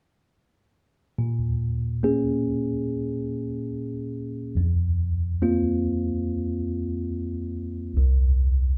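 A mellow tine electric piano, worn, slightly out of tune and lightly overdriven, sits up front in this intimate, heartbroken folk excerpt in Bb minor at 71 BPM, playing accompaniment from 1.2 to 8.8 seconds over Bbm7 and Fsus4 before the harmony drops away at 8.0 seconds, all heard as if played live in one room with a wet studio reverb.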